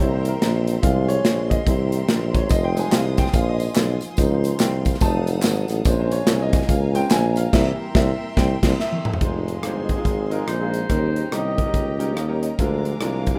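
A roomy, up-front tuba bass and a punchy acoustic drum kit drive this soulful, fervent uptempo gospel cut in F minor at 143 BPM with a swung 4/4 feel, as a clear, boxy grand piano solos over a very quiet, flute-like tonewheel organ with key click and rotary speaker and smooth, bowed strings, while background tambourine and group handclaps join from 2.5 to 7.4 seconds, a distant jazz-style horn section carries the melody from 9.6 seconds, and the piano adds a fill at 11.7 seconds, all in a dry, rough home demo mix.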